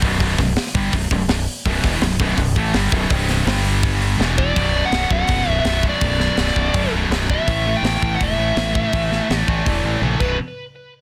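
A double-tracked, high-gain distorted guitar riff opens this heavy, relentless metal piece, driven by a growling overdriven fingered bass and a tight acoustic drum kit with a high-tuned snare, tight kick and rolled-off top. After a drum fill at 4.2 seconds, a dark, smooth lead guitar with overdrive and delay enters at 4.4 seconds as the power-chord riff gives way to a B minor passage. A second fill at 10.0 seconds closes the segment, and the mix is dry, dense and heavily limited, with the riff guitar and drums up front.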